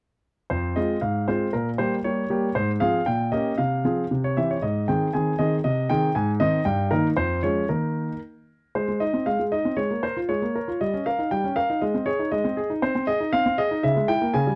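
A solo grand piano opens at 0.5 seconds in F minor, setting an elegant, serious tone for this classical-period sonatina fragment, cut from a longer piece. The tempo sits at 118 BPM in a straight 2/4, and the piano ranges from F2 up to Ab5. Its sound is clear and intimate, placed up front with a natural character, and the noise of the instrument's action is audible beneath the notes. Early harmonies move through Fm, Gdim/Bb and Fm/C to a C chord before the music turns to Ab major at 4.6 seconds, continuing through Eb/G and Db/F to an open Eb5. A second section begins at 8.8 seconds, moving from Ab through Bbm7/Ab and Eb7/G and closing on Bbm7b5/Db. Light reverb and a dark, warm production frame the playing.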